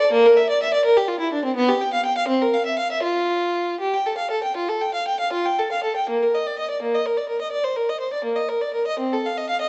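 A lone bowed violin, up front with a smooth, even vibrato tone, carries this radiant, dance-like baroque-style suite movement in 12/8 at 81 BPM with rubato and uneven beats, moving from F major into Bb major at 6.1 s, all set in a dark, warm production with the wet bloom of a recital hall in this short cut from a longer piece.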